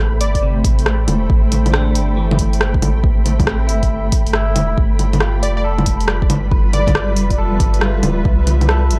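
A dry, gritty hardware recording with light reverb carries this ghostly, wistful future garage fragment, where a blurred, detuned granular cloud pad and a round sine sub bass both pump against the sidechain under a flickering, grainy texture in the background. Swung deep house drums with bongos, hi-hat and rim click sit up front beside a deep, tape-warm electronic kick, while a clean, twangy electric guitar picks compressed accompaniment through tape echo. A punchy, bright plucky unison lead with vibrato, chorus and delay flashes briefly at the start and returns at 5.4 s, over chords moving from Am7 to G13 and Cmaj7.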